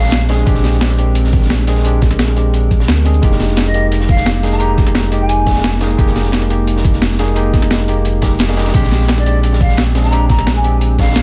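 A deep, up-front sine sub bass, a worn, slightly out-of-tune tine electric piano with 12-bit sampler grit and dub echo, and a dark, high-pass-filtered acoustic breakbeat kit tucked in the background open this soulful, lush liquid drum and bass excerpt at 174 BPM in F dorian. They are joined by a very quiet, glassy FM pad with ensemble chorus, an overdriven sampler-style breakbeat kit with crash, shaker and medium-tuned snare, a thumpy overdriven electronic kick from 0.5 seconds, and a distant, hollow silver flute with vibrato and dub echo whose phrases arrive at 3.7 and 9.2 seconds, set in a dry room sound over Bb13 and Fm11 chords.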